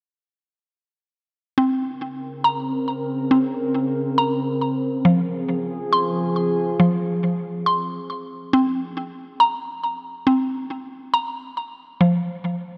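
Hip hop with a dark, tense mood and a half-time feel, this excerpt is cut from a longer piece. A mallet-like synth pluck opens at 1.6 seconds with arpeggios, its woody, round FM tone carrying a fast attack, short decay and a noise layer, treated with chorus, a low-pass filter and digital delay, and placed up front. At 2.2 seconds a warbling, tape-like pad joins with sustained chords, its detuned sawtooth and triangle layers giving a nostalgic, lo-fi, mellow colour with a slow attack, long release, chorus and its own reverb. The pad drops out at 8.5 seconds, leaving the pluck to carry the closing stretch over a shift in harmony from Bbmadd9 and Fm to Bbsus2 and F5. A moderate, lush hall reverb surrounds the whole arrangement.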